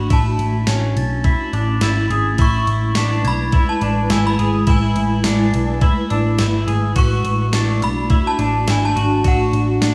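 A small, reverberant room frames this dreamy, floating dream pop fragment, cut from a longer piece and moving in a straight 4/4 at 105 BPM. A tape-warm, gated 80s digital drum machine sits up front from 0.1 s, with a thumpy kick, gated snare, ride cymbal and tambourine. Beside it, a dark, round, foam-muted electric bass holds the low end, while a clean, twangy electric guitar plays arpeggios through lush chorus and tape echo. An ethereal, detuned pad sustains slow-attack chords with a moving notch, and above it an inharmonic FM synth chime rings out the melody through ensemble chorus, plate reverb and tape echo. Between 1.0 and 7.2 s, a metallic glockenspiel struck with soft plastic mallets adds bell-like texture in the background as the harmony moves from A to E and then to D.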